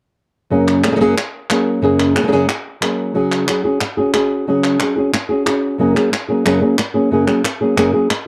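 A thumb-plucked acoustic flamenco guitar sits up front carrying the melody over crisp palmas hand claps in this fiery, proud flamenco fragment at 182 BPM in F# major, moving from F#add9 to C#sus4 and back within a dark production touched by moderate spring reverb.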